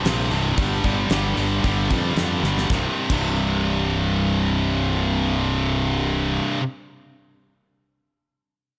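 Hard rock with energetic, powerful drive, this short cut pairs two bright, high-gain distorted electric guitars (one scooped) picking a riff over C5 and G5 power chords, a growly, fuzz-overdriven fingered bass up front, and a polished, gated 80s kit with a fat snare, tight kick and bright cymbals that plays a fill at 2.4 seconds and drops out at 3.2 seconds, all in a light small-room ambience.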